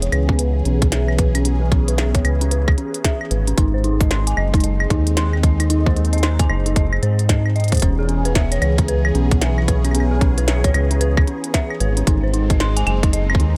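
A swung 16th-note groove at 113 BPM in 4/4 drives this playful, intricate IDM excerpt, with a tight, overdriven electronic kick drum arriving up front at 0.3 s. Around it, a glitchy drum kit of claves, clicky hi-hats and a tiny snare, also overdriven and re-recorded in a small room, scatters its detail. A round analog bass sits prominently underneath, deep and mellow, blending sawtooth and sine tones with ring modulation into a sound that keeps evolving. Above it, a phased analog pad holds detuned sawtooth chords with a slow attack and long release, its swirling tone shaped by a moving notch, phaser and chorus as the harmony shifts between E6 and G#. A dark detuned synth bell spins FM arpeggios that are eerie and inharmonic yet full-bodied, passed through chorus, delay and a low-pass filter that sweeps across the whole passage. Digital ambience surrounds the parts.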